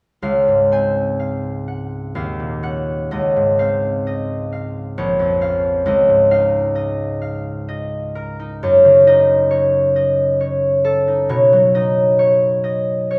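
Set in a reverberant stone room with a 1.4-second decay, this short excerpt of a dreamy, serene classical piece features a solo concert harp, fingerpicked and ringing, which plays up front from 0.2 to 13.2 seconds in Db major at 60-69 BPM in a rubato 3/4, tuned to A4 = 437 Hz and moving through lush chords such as Dbmaj7, Ebm9, Gbm6 and Cbadd9 across a range from Bb1 to Ab5.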